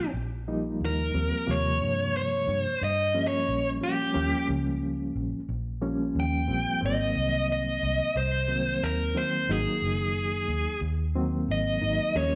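A large, wet studio reverb wraps this laid-back, soulful straight-eighth soul blues excerpt at 90 BPM, where a dark, smooth overdriven lead guitar sits up front carrying the melody over a reedy electric piano with fast tremolo and a round, foam-muted fingered electric bass, the band moving from Eb9 to Ab9 at 6.8 seconds as if playing live together in one room.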